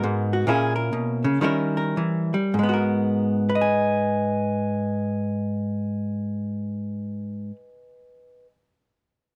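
Moody and swinging, this brief solo jazz fragment in G# minor features a lone electric archtop guitar, dark, clean, compressed and up front, picking through A#m7b5 and D#7b9 to land on G#m9 at 2.5 seconds, with a rubato 4/4 swing feel between 102 and 140 BPM that slows over the opening 2.5 seconds, all captured in a dry, close 1970s-style studio sound.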